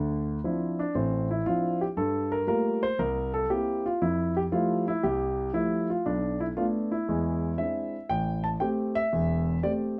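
A dark concert grand piano plays solo jazz in a relaxed, swung 4/4, sitting up front with a mellow tone and deep bass. It moves through rich chords such as Dm9, Gm9 and Fmaj9 before turning toward Bm7 and E7b13. At 8.1 seconds a new section begins on Am7, and moderate studio reverb gives this warm fragment of a longer piece a gentle sense of space.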